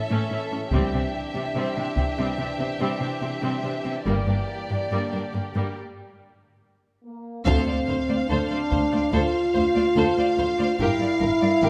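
Cinematic, epic orchestral film score in D minor at 72 BPM, dramatic and relentless, in which mellow French horns hold sustained chords over a close, focused cello bass line and bowed double basses, while a lush violin section carries a second line and distant, expressive violas accompany; heavy-stick taiko hits arrive at 0.7 s and return at 7.5 s as the build-up gives way to a band accent, and a second violin section takes up the melody from 7.4 s, heard in a moderate scoring-stage reverb.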